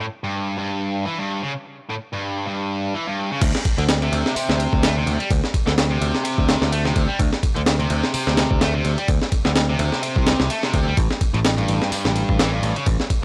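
A bright, overdriven, double-tracked electric guitar opens alone with a riff coloured by tube saturation and analog delay, setting up a funky, swaggering breakbeat groove at 127 BPM with a swung 16th-note feel. At 3.4 seconds the drop lands on a D5 chord as a compressed, pitched-up sampler-style breakbeat kit enters up front, with a thumpy kick, medium-tuned snare, hi-hat, ride and crash in a small room, alongside a growly picked electric bass. The harmony shifts to an A7 chord with its third omitted at 11.0 seconds in this dry, gritty hardware recording with transformer saturation, cut from a longer piece.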